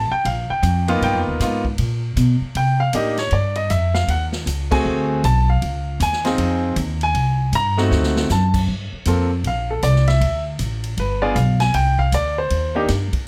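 Jazz piano trio in a smoky, late-night mood, swinging in 4/4, with a clear, intimate baby grand carrying the melody up front, its action noise audible and its notes sustaining long, beside a woody, thumpy upright bass on gut strings and a swinging big-band drum kit with a boomy kick, medium-tuned snare, ride, hi-hat and crash sitting farther back in light reverb. The harmony moves through rich minor, major and altered dominant chords such as Gm9, G7alt and Dbmaj9, with a band accent at 4.7 seconds and a drum fill at 7.9 seconds leading into a piano solo from 8.7 seconds in this fragment cut from a longer piece.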